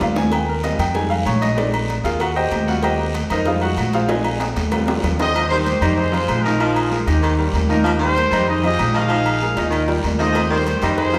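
Festive, danceable salsa in a straight four, heard as a short excerpt cut from a longer piece. A bright, brilliant concert grand piano sits up front with a worn character and deep bass, carrying a piano solo over the opening stretch while the chords cycle between Eb6, Fm9 and Bb7sus4. Beneath it, a woody, thumpy upright bass with gut strings is plucked, dark and up front, and a bed of percussion fills out the groove: thick-skinned, high-tuned congas in the background, tight cowbell and bongos played with soft hands until 5.3 seconds and again briefly near the end, ringing metal-shell timbales with agogo bells, and a raspy guiro. At 5.2 seconds a clear, tight trumpet section enters with light vibrato to take the melody, joined at 5.3 seconds by a breathy baritone saxophone with scooped notes, playing a second line further back. Drum fills mark the start, the turn around 4.1 seconds, and a spot near 9.6 seconds, and the whole band sounds through a reverberant recital-hall space.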